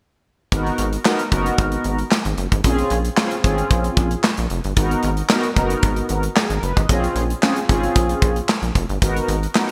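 A straight, danceable 4/4 groove from an up-front studio drum kit, with tight kick, medium-tuned snare, hi-hat and handclaps, drives this funky early-eighties boogie funk excerpt. A rubbery, hollow square-wave bass with a resonant filter pluck bounces underneath, while mellow, brassy synth brass with chorus and vibrato sustains chords alternating between G#m9 and A#m9. The bright digital-era production sits in a lush hall reverb, and all three parts enter together at 0.5 seconds.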